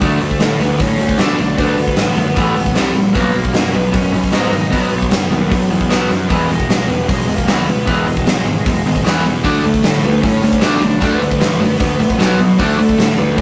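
A straight 4/4 pulse at 153 BPM drives this energetic, upbeat punk rock excerpt, with a big rock drum kit sitting up front, its punchy kick, medium-tuned snare and hi-hat ringing in a stone room. A compressed, overdriven electric guitar riff and a growly, fuzzed picked bass churn beneath a dark, distorted bluesy lead guitar melody, and a crunchy, bright second riff guitar joins in the background at 9.4 s. The rough rehearsal-room sound carries tube saturation and light reverb, and the 13.4-second clip is cut from a longer piece.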